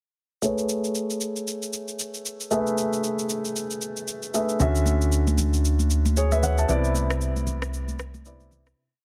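Relaxed and unhurried, this short amapiano piece moves at 115 BPM in 4/4 with a swung sixteenth-note feel in A major, built as a single breakdown. A warm, up-front grand piano plays push chord rhythms in spread voicings with short fills from 0.4 seconds, passing through Amaj9, Dmaj9 and Cmaj9 while a low-pass filter sweep shapes its tone. Alongside it, a layered, tape-tinged electronic kit of steady shaker, soft kick and syncopated rim click carries the groove. At 4.6 seconds a round, sine-like sub bass arrives with deep, sustained notes sitting prominently in the mix, joined by high-tuned, thick-skinned congas played with hard hands, interlocking close and dry in the background. The whole piece sits in a small room ambience with a heavily compressed, radio-like sound, and a fade-out begins at 6.7 seconds.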